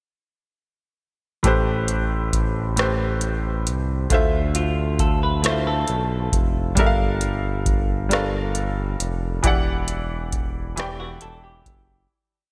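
Yearning and sultry, this brief slow six-eight R&B piece in A minor moves at 45 BPM with a bright 1980s-style digital sheen and light reverb, its verse passing through Am9, Dm9, Gm9 and Em9 before fading out from 9.4 seconds. A clear, worn grand piano plays spread chords in quarters with grace notes over a smooth sawtooth synth bass that slides through a slow line, while a booming analog drum machine, re-recorded in a small room, supplies a deep kick, metallic hi-hats and rim clicks. A clean, compressed semi-hollow electric guitar colored by lush chorus adds short fingered fills between phrases, entering at 4.6 seconds and returning at 11.0 seconds.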